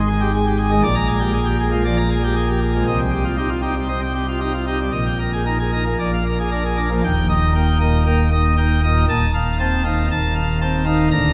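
A wet church reverb with a 2.6-second decay surrounds this recording, and a vinyl crackle sits beneath it. The piece is a majestic, brilliant classical organ toccata in Eb major, moving at 117 BPM in a straight 4/4, cut from a longer work. A solo pipe organ plays throughout on a full plenum registration with mixtures, its baroque voicing giving each note a touch of chiff while the instrument stands up front in the sound. Its range spans from a deep D1 to Bb5 at the top. The harmony travels from Ab5 through Bb7, Cm and Eb/Bb to Bb, and at 7.0 seconds a new section opens on Eb before turning to F7/Eb until the close at 11.3 seconds.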